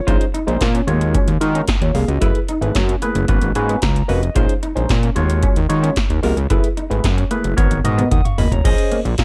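A barky, lightly overdriven tine electric piano with tube saturation and phaser opens this slick, funky early-eighties boogie funk clip, joined at once by a fat, detuned sawtooth analog bass with a filter sweep up front, a dry electronic drum machine with deep kick, punchy snare and metallic hats, and a clean semi-hollow guitar riff bathed in lush chorus in the background, as the band moves through minor-eleventh chords over a straight groove, with an electric piano fill at 3.3 seconds and a drum fill at 7.6 seconds in a setting of little reverb.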